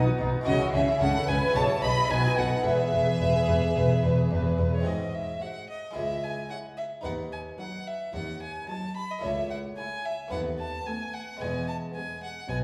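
A clear, close solo violin carries the melody up front in this festive, brilliant baroque-style concerto movement in E major at 110 BPM, joined by a smooth background chamber violin section on the tune, a focused second violin line, a round, full Italian-style harpsichord accompaniment, a lush symphonic viola section, and a distant, expressive cello section beside a rich double bass section on the bass from 0.2 seconds, the strings bowed with vibrato in a reverberant recital hall.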